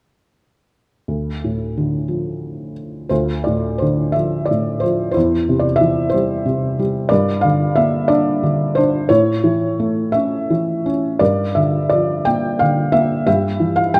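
Classical lyrical solo piano in D minor, wistful and reflective, with a felt-muted upright piano playing alone from 1.1 to 14.0 seconds in a rubato 6/8 at about 55-63 BPM, its soft, intimate, mellow tone, short sustain and audible action noise sitting up front in light reverb as the harmony moves from Dm through C/E, Gm and A to Gm7 and Em/G in this excerpt from a longer piece.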